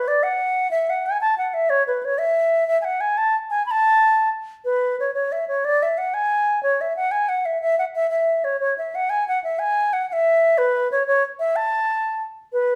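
Celtic folk in a lively, rollicking 6/8 with a straight feel, this short cut from a longer piece features a solo wooden flute with a pure, mellow straight tone and crisp attack, sitting up front between B4 and B5 in a wet studio reverb that gives the feel of a band playing live in one room, moving from its first section into a second at 4.7 seconds.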